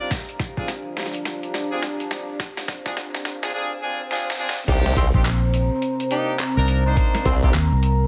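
A funky, playful glitch hop cut opens on tight, bright jazz horn stabs with delay over a deep, moody, detuned ambient pad, gritty pitched-down sampler drums with handclaps, hi-hat and crash, and a thumpy compressed kick, while a dark analog pad with phaser, chorus and 12-bit sampler grit pumps in from 0.9 seconds as drum fills and a filter sweep on that pad build toward an electronic swell. At 4.7 seconds the drop lands on an up-front sawtooth formant-sweep wobble bass with chorus, soon joined by a round, foam-muted fingered electric bass with tube saturation. A breathy tenor saxophone with scooped notes, vibrato and delay plays in the background as the harmony moves from Dm7b5 to Cm7 at the drop.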